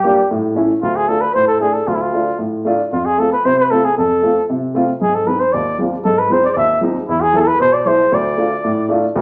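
A mellow cornet carries the melody up front in a classical style, with light vibrato and a soft attack, in this festive yet soulful klezmer fragment at 115 BPM in 2/4, set in D dorian sharp4. Beneath it, a dark upright piano gives woody, intimate accompaniment with short sustain, a vintage character and audible action noise, moving through Dm, F, G# and E before returning to Dm at 8.1 seconds. Both parts sit in a large studio with a wet reverb, and the cornet drops out at 8.9 seconds as the piano rings on to 9.2.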